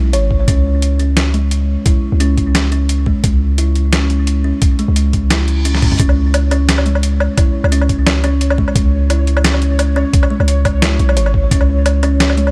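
Heavy and cinematic, this half-time drum and bass piece moves at 174 BPM in C# minor, with a light swing on the sixteenths and a single C# minor chord underpinning it. A deep, mellow 808-style bass with a sine tone sits up front from the start, its long notes striking fast and then decaying in the low register. Woody, hollow kalimba arpeggios with a thumb-plucked, ringing quality float above, trailed by dub echo. The drums are gritty, pitched down and compressed, with a tape-like character: a thumpy electronic kick, plus a sampler-style boom bap kit of hi-hat, medium-tuned snare, toms and woodblock set up front in studio reverb. At 5.5 seconds a brief electronic reverse cymbal sweeps in, with a drum fill landing at 5.7 seconds, and from 6.0 seconds a detuned, triangle-toned gated texture pulses in time on a high C#, chorused and softly reverberant in the background. The overall sound is dry and loud, and the recording is an excerpt cut from a longer piece.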